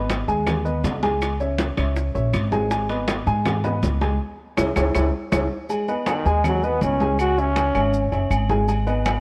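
Danceable and driving, this salsa cut in G# minor moves at 161 BPM, with a dark, boxy baby grand piano and a growly, thumpy pizzicato upright bass up front over ringing congas, close, round low-tuned bongos, woody claves, grainy maracas, and distant timbales and agogo bells. The chords sway between G#m and C#m, and a band accent at 4.2 seconds leads into a drum fill before a raspy, gritty trombone enters at 6.1 seconds for a punchy, vibrato-laden solo. The whole recording sits in light reverb with the worn, warbling pitch drift of old cassette tape.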